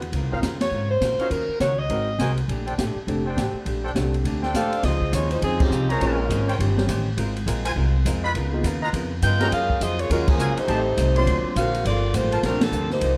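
Big band swing jazz, swinging and brassy, cut from a longer piece and punctuated by band accents, the first at 0.6 seconds. A dark, tight saxophone section carries the melody up front with light vibrato, while a mellow trumpet section plays stabs, a woody, thumpy pizzicato upright bass sits close, and an acoustic drum kit in a small room drives the swing with a high-tuned snare and boomy kick. Further back, an intimate grand piano with audible action noise and a clean, picked hollow-body electric guitar fill in the lush jazz chords under light reverb.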